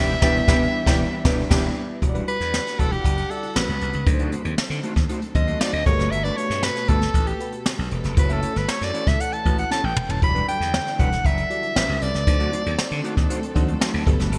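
A bright, polished 1980s-style digital production with light small-room reverb frames this bittersweet, urban jazz-funk pop excerpt, cut from a longer piece. After an opening band accent that includes a mellow, octave-doubled horn section ending at 1.6 s, an up-front soprano saxophone with vibrato and digital delay takes a smooth pop-style solo from 2.0 s. Beneath it sit glassy, bell-like FM electric piano with analog chorus, a dark, clean fingered guitar riff in the background, very quiet, lush bowed strings, growly slap bass, and a jazz kit played with brushes, its high-tuned snare, boomy kick and gated reverb up front, adding a drum fill at 9.7 s before an electric piano fill closes the passage.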